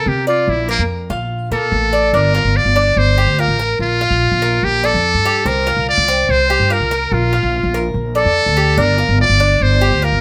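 Latin Cuban son and guajira with a warm, danceable mood, this passage, cut from a longer piece, moves in a straight four-beat feel under light reverb. A trumpet with a metal mute carries the melody up front, buzzy and thin with light vibrato, soft attacks and scooped notes in a jazz style, and takes a solo in the first 2.1 seconds, while the Cuban tres picks metallic arpeggios on its doubled strings. Beneath them, a pizzicato upright bass sounds woody, growly and thumpy as the harmony cycles through Bb, Gm7 and C7sus4.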